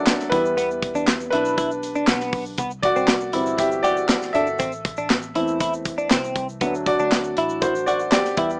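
A clear, up-front baby grand piano carries this dramatic, bittersweet piano-driven pop fragment over an Em, C, Am, D progression, joined by a twangy clean electric guitar riff with analog chorus, a polished drum kit with tight kick and handclaps, a round, dark muted bass and a grainy egg shaker in the background, all in a rough home-demo mix with light reverb and a small-speaker sound.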